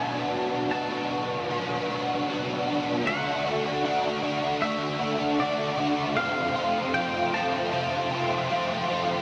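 A lush hall reverb soaks this short rock excerpt, giving the mix a dreamy, hazy glow. At 77 BPM in a straight 4/4, a biting overdriven guitar sits up front, its double-tracked riff thickened by ensemble chorus and running from 0.0 to 9.2 seconds. Behind it, a twangy, scooped electric guitar plays a clean, compressed melody in its upper register, blurred by a diffuse ambient delay until it drops out at 8.5 seconds. The harmony moves from Bm7 to D at 3.1 seconds as the piece shifts into a new section, then on to F at 6.2 seconds. Both guitars are picked and bright, but the riff's grit stands out against the melody's clean twang.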